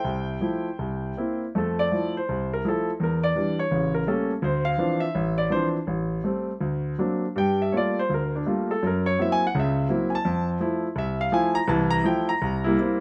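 The rhythm swings its eighth notes at 164 BPM in 4/4, yet the time is handled with rubato, so the pulse stretches and relaxes freely. This is solo jazz in F major, playful and relaxed in mood, with a single grand piano carrying the whole performance, cut from a longer piece. The piano's tone is clear and polished, sitting up front and present in a light reverb, and it ranges from A1 up to Bb5. After a brief opening turn from Fmaj7 to C7, the piano's solo begins at 1.5 seconds and runs to 13.0 seconds. The harmony moves through colorful jazz changes such as Em7b5, A7b9, Dm9, D7b13, Gm9 and Gb7#11 before settling back on Fmaj7 and closing on C7.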